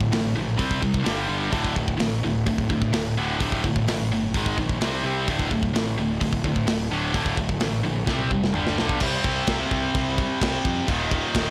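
A straight 4/4 pulse at 128 BPM drives this dark, epic heavy metal excerpt, where a bright, double-tracked high-gain guitar riff built on power chords such as D5, G5 and a tense G#5 sits up front over a growly, fuzz-laden picked bass and a tight, gritty acoustic drum kit with a saturated, clipped kick, all in a blown-out, overdriven studio sound, with a drum fill at 8.1 seconds leading into a new section at 9.0 seconds that turns toward C5 and Eb5.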